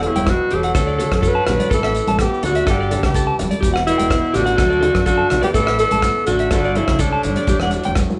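A clear alto saxophone with vibrato sits up front and carries the melody through this joyful, sunny highlife guitar band excerpt, while a raspy, gritty tenor saxophone plays a forceful second line beneath it. A clean, picked electric guitar spins arpeggios from 0.2 seconds, and a dark, fingerpicked nylon-string guitar sits very quietly in the accompaniment, its finger squeaks just audible. The round, punchy fingered electric bass anchors a cycle of Emadd9, D, A and Gsus2 chords over a straight 4/4 groove. A dry, damped 70s drum kit with a tight kick, hi-hat and rim click sits up front, with a drum fill at 8.0 seconds, while ringing congas and grainy, vintage maracas, entering at 0.8 seconds, stay in the background. The band plays live in one large studio with moderate reverb and a slightly dulled top end.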